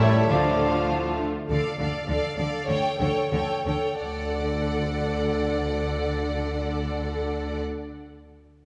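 A dramatic, restless D minor orchestral movement in 2/4 opens at 84-104 BPM with rich violins carrying the melody over a second violin line, while a mellow cor anglais, a very quiet clarinet, an airy silver flute and a clear bassoon add brief woodwind lines, distant French horns hold soft sustained chords, even violas fill the accompaniment above focused cellos and up-front double basses, and round soft-mallet timpani enter at 0.3 s on the D minor chord before the tempo slows from 0.9 to 4.0 s, all set in a wet scoring-stage reverb.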